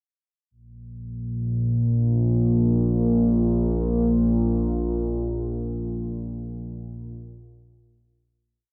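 An analog drone carries this short ambient piece alone, entering at 1.0 s and holding a low register from Bb1 to Bb2 in free time. Its vintage sawtooth and pulse-wave tone evolves through pulse-width modulation, with a slow attack, long sustain and long release, and sits up front, thickened by chorus and tape echo. A huge, wet ambient reverb with a 9.1-second decay surrounds it, giving the piece a cavernous, desolate mood. The sound is worn, like old cassette tape, with a warbling pitch drift. A fade-out begins at 4.7 s and carries the whole piece to its close.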